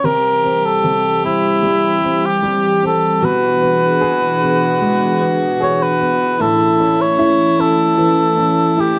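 Acoustic folk-pop ballad in a melancholic, heartbroken mood, heard in a short cut from a longer piece with a straight, unhurried 4/4 feel and tuning set to A4 = 444 Hz. A mellow cor anglais carries the melody up front in a classical style, its light vibrato giving the solo line a tender ache. Beside it, a rich violin plays a second line from a single bowed player, sul tasto and pure, with a soft attack and a floating quality that keeps it close to the listener. An intimate upright piano supplies the accompaniment with a clear, woody, natural tone, short sustain and audible action noise, while an airy, breathy pad of detuned triangle and sawtooth layers with a noise layer holds sustained chords with slow attack, long release and chorus. The harmony moves from C to E7/B at 3.2 seconds and settles on A at 6.4 seconds, all within a moderate studio reverb that keeps the sound soft-edged and gentle at the top.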